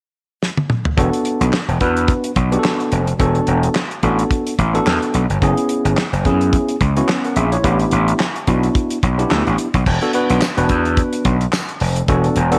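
A dry drum fill at 0.4 seconds opens this slick, late-night excerpt of early-eighties boogie funk at 108 BPM, swung on the 16ths in E dorian, before a punchy, overdriven slap bass, a clean tine electric piano heard through its built-in speakers, and a damped 70s kit with fat snare, tight kick, dark cymbals, toms and handclaps settle up front over E9sus4, F#9sus4 and A9sus4 chords, while a jingly tambourine sits in the background from 10.4 to 11.7 seconds, under light small-room reverb.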